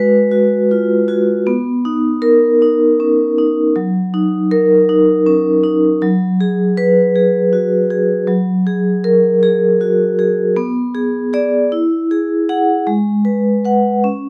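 A lilting 6/8 metre, felt in an unhurried, straight pulse of dotted quarters, carries this short passage cut from a longer contemporary classical piece for solo vibraphone. The mood is playful and warm, with the vibraphone alone throughout its 14.3 seconds, struck with medium mallets and spanning F#3 to F#5. Its metallic, ringing tone sits up front, colored by a medium motor vibrato that gives each sustained note a gentle shimmer. The harmony moves through rich extended chords, opening on G#m7 and passing through Bmaj9, F#6, G#m7/F# and F#add9 before a darker turn to Bm6 at 10.6 seconds, then Eadd9, and a return to G#m7 at 12.9 seconds. Close, detailed microphones capture the instrument intimately, while a moderate stone-room reverb adds a sense of space around it.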